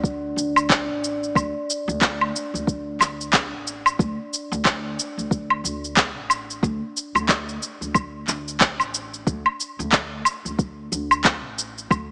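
A swung sixteenth-note groove at 91 BPM in 4/4 drives this earthy organic downtempo cut: up-front electronic cabasa, woodblock and handclaps ride over a soft produced kick, while a woody pizzicato upright bass with steel strings, tube saturation and sidechain pumping sits low beneath them, and a ringing, metallic bronze singing bowl played with a suede striker adds slow, meditative beating over a D5 chord, tuned to A4 = 438 Hz and heard through light reverb and small room ambience with a small-speaker character.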